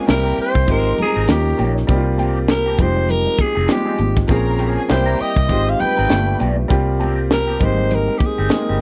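Romantic and lush, this 1970s-style soul excerpt at 100 BPM with a swung 16th feel sets a raspy, vibrato-laden alto saxophone melody over a tight funk kit with a high-tuned snare, a round foam-muted fingered bass, grand piano accompaniment, a dark, slightly broken-up electric guitar riff with wah and subtle chorus, very quiet high-tuned congas, and a distant bowed violin section that stops at 6.4 s, in a dry, close studio sound as the harmony moves through C7, Fm7 and Bbm7 before reaching Abmaj7.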